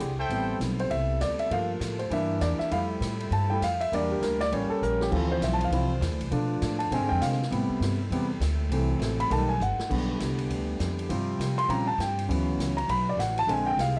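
A swinging 4/4 at 200 BPM drives this dramatic, sultry big band jazz passage in A minor, with woody pizzicato upright bass up front and a natural-sounding drum kit with a punchy kick, ride and hi-hat that adds fills at 4.8 and 9.6 seconds. A clear, present trumpet section fires a brief vibrato stab at 0.2 seconds before the up-front grand piano takes a rich solo through jazz chords like Am7, A7b9 and Dmaj13, while a smooth saxophone section holds sustained chords in the background. The piano, horns and drums carry a dry, lo-fi cassette-tape character, giving this cut from a longer piece an intimate, homemade feel.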